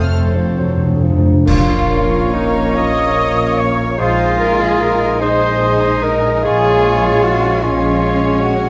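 Yearning and melancholic, this slow, rubato romantic orchestral excerpt in 12/8 and Bb minor moves at 44-51 BPM, with a rich, vibrato-laden violin section carrying the melody in the background while a clear clarinet, a clear oboe, a hollow silver flute and a second violin section weave secondary lines over a mellow bassoon, a lush, very quiet viola section, mellow, sustained French horn chords, a ringing harp playing arpeggios and bright trumpet stabs, all grounded by an expressive cello section with portamento and a distant double bass section, as round, up-front timpani open with a fill before bright clash cymbals and concert bass drum deliver an accent at 1.5 seconds, the whole set in a moderate recital hall reverb.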